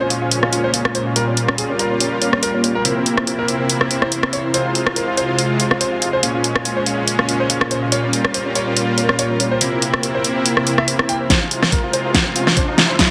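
Aggressive and menacing, this heavy wobble dubstep cut moves in a half-time 4/4 with a light swing, drawn from a longer piece. A concert grand piano carries the melody with a smooth, vintage tone, softened by a low-pass filter and tape echo, while huge, detuned supersaw chords sit up front, bright and sustained, pumping against the sidechain. Beneath them, an ethereal, airy pad with a slow attack and long release stays in the background, shimmering with ensemble chorus and tremolo. A big-room dance kit of hi-hat, rim click and a huge, softly clipped snare drives the track from 0.1 seconds, and the harmony circles through minor-seventh, half-diminished and dominant chords, all bathed in a lush hall reverb. At 11.3 seconds a build-up begins with a drum fill, an overdriven, knocking electronic kick and a filter sweep on the piano, joined at 11.6 seconds by a background riser, all within a dense, heavily limited master.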